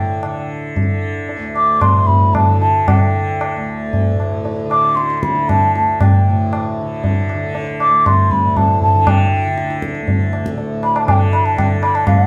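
Meditative and solemn, this short piece of Hindustani classical music is cut from a longer performance in raga Bhimpalasi on D, moving in 3/4 at 116 BPM and speeding up as it goes. A mellow, hollow bansuri carries the melody from the very start, its airy bamboo tone close-miked and shaded with vibrato and tongued notes. Beneath it, a tanpura sustains a softly plucked drone, its buzzing, shimmering strings sitting lower in the mix. The tabla enters at 0.2 seconds, high-tuned and ringing, placed up front with the sound of a live room around it. The players perform together in one room, and a wet studio reverb gives the ensemble a gentle halo through to the end at 12.3 seconds.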